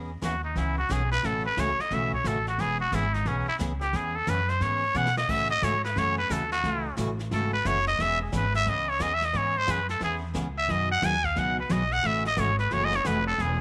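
Bathed in a moderate spring reverb within a small room, this short cut from a longer western swing number has a down-home, playful country mood and a lilting swing feel. A nasal, gritty trumpet with a straight mute takes the lead up front from 0.2 seconds, its growling jazz-style solo carrying a light vibrato. Beneath it, a full-bodied picked dreadnought guitar plays the accompaniment, a woody, thumpy upright bass plucks gut strings, and a brush kit with a boomy kick sits in the background, adding a brief drum fill at 5.0 seconds.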